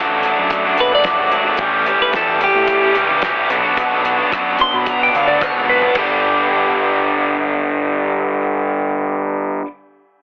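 Squeezed into a heavily compressed, telephone-like radio sound with light small-room reverb, this wistful, carefree indie rock excerpt at 110 BPM in G lydian sets a bright, twangy, slightly broken-up guitar solo with phaser and slapback echo over a raw, overdriven garage riff up front and a round fuzz bass, while a cloth-damped, thuddy drum kit with dark cymbals sits in the background until a fill at 5.7 seconds, after which the lead guitar stops at 6.0 seconds as the chords settle on G.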